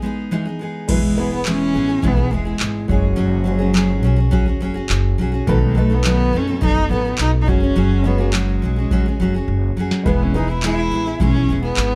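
A full-bodied picked steel-string acoustic guitar opens this wistful, tender acoustic pop excerpt alone before, at 0.9 seconds, a dark bowed cello enters with an expressive vibrato-and-portamento melody, joined by woody pizzicato upright bass up front, a mellow grand piano with audible action noise in the background, and a booming analog drum machine with deep kick, tonal snare, handclaps and crash cymbal that plays a fill at 9.5 seconds, all in a nearly dry sound.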